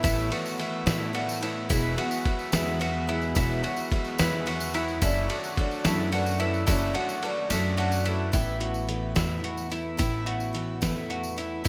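A bright, shimmering twelve-string acoustic guitar, mandolin arpeggios, pizzicato upright bass and a muffled, overdriven lo-fi drum kit with a thumpy kick and fat snare open this anthemic, uplifting indie folk excerpt at 72 BPM in 6/8, together with jingly tambourine, a woody upright piano and a dark, round tonewheel organ turning slowly through its rotary speaker. Kick and snare drop out at 7.5 seconds, and around 8.3 seconds the piano and organ fall away as a fingerpicked steel-string guitar with finger squeak and lush chorus enters over the chords. A lush hall reverb and polished 1980s-style digital sheen frame the building arrangement, with the gated drums sitting up front.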